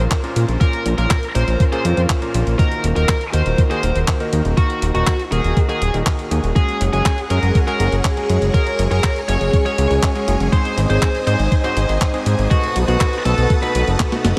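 A dreamy, reverb-soaked mix carries this danceable, nostalgic italo disco excerpt at 121 BPM, where a thumpy, up-front electronic kick and a fat, detuned sawtooth analog bass with a filter sweep sit beneath clangy electric grand piano stabs and tape-warm 12-bit drum machine handclaps, hi-hat and snare, while a bright, high-gain lead guitar sings through distortion and tape echo, lush string machine chords with ensemble chorus join at 6.6 seconds, and a drum fill closes at 14.0 seconds over a Bbm to Ebm, Gbsus2, Ab and B7 progression.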